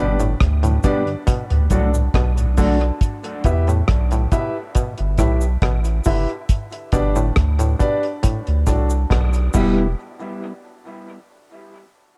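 Spacious and meditative, this dub reggae passage in E minor moves at 69 BPM over a round, up-front sub bass and a dry, tight-kicked reggae drum kit with crash, hi-hat and rim click, while a vintage grand piano with audible action noise plays stabs and a stringy muted clav runs arpeggios, both carried by dub echo alongside a faint echoed cabasa, and a clean electric guitar with harmonic tremolo and a flute-like tonewheel organ with slow rotary speaker, also echoed, sit in the background, dropping out by 2.8 seconds and returning at 9.5 seconds, within a dark, lightly reverberant production cut from a longer piece.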